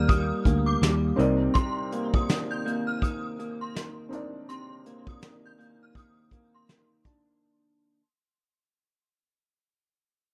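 A light reverb gives this laid-back, sunny bedroom-pop excerpt at 82 BPM, fading out over its first 7.4 seconds, a soft glow as a lo-fi, slightly broken-up electric guitar with analog chorus and warbly pitch drift picks over Ebmaj7 and Cm9 beside a woody, slightly detuned upright piano with audible action noise, while a round, foam-muted bass plays only until 1.5 seconds, a roomy brush kit with a fat snare and punchy kick swings lazily, and an inharmonic FM synth chime rings high above through ensemble chorus, tremolo and tape echo.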